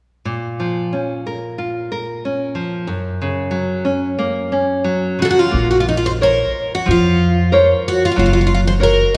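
Passionate and longing, this fado-style ballad in Bb minor drifts with an uneven, rubato feel around 91 BPM, as a deep, fingerpicked nylon-string guitar opens alone at 0.3 s, a bright, shimmering, octave-doubled twelve-string guitar takes up the melody up front at 5.2 s with audible finger squeak, and a woody, thumpy pizzicato upright bass on gut strings enters at 5.5 s, all carried by the moderate reverb of a concert hall in this short cut from a longer piece.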